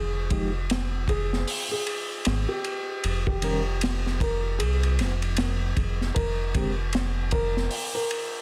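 Melancholic and hypnotic, this brief trip hop fragment in F minor moves at a slow 77 BPM in 4/4, with a 60% swing on the 16th notes. A felt-muted upright piano carries the melody in a narrow range from G4 to Bb4, its thick felt and audible action noise lending an intimate, mellow quality, softened further by tape echo. Underneath, a round analog bass sits up front in the low register, deep and sustained with a fast attack and an evolving tone. A reedy electric piano enters at 0.3 seconds with tremolo and a vintage 12-bit sampler grit, supplying accompaniment until 6.7 seconds. The crunchy breakbeat kit, also entering at 0.3 seconds, sounds saturated and gritty, with a punchy kick, a high-tuned snare, dark cymbals on hi-hat and ride, and a rolled-off top. The harmony drifts from Fm to a rootless Ebadd9 over F and settles on Fsus4, all bathed in studio reverb.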